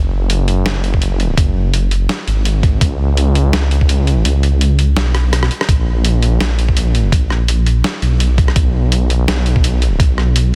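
Half-time drum and bass with a tense yet spacious mood, set in 4/4 with a swung sixteenth-note feel. A deep, rumbling detuned saw bass sits up front from the first moment, its dark, beating tone blending sawtooth and sine with a fast attack and long sustain. A gritty, pitched-down, sampler-style drum kit brings hi-hat, rim click and a medium-tuned snare, while a compressed, thumpy electronic kick anchors the low end; both drum parts carry a touch of studio reverb. The kick drops out at 4.3 seconds, a drum fill arrives at 5.2 seconds, and the kick returns at 5.7 seconds. The mix is dense and heavily limited in a modern style, and this brief section is cut from a longer piece.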